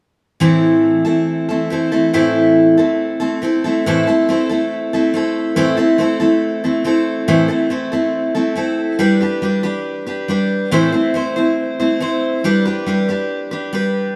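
Country solo for picked steel-string acoustic guitar in A minor, moving at 140 BPM in a straight 4/4 with a dusty, brooding mood, cut from a longer piece. The jumbo guitar sits up front with a bright, full-bodied tone, spanning A2 to C5 from 0.4 to 14.2 seconds, while a moderate plate reverb gives it a lingering tail. The harmony rests on Am before turning between G and Am from 9.0 seconds onward, with a new section arriving at 3.9 seconds.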